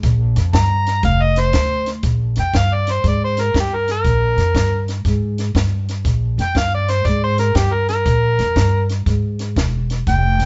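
Soulful and swaggering, this excerpt of a 120 BPM electric blues shuffle in Bb mixolydian rides on a woody, thumpy gut-string upright bass and a dry compact cocktail kit with a high-tuned snare and punchy kick, while a gritty, amplified harmonica enters at 0.5 seconds with a jazz-style solo full of light vibrato and tongue slaps, the band captured playing live in one room with light reverb and a softened top end.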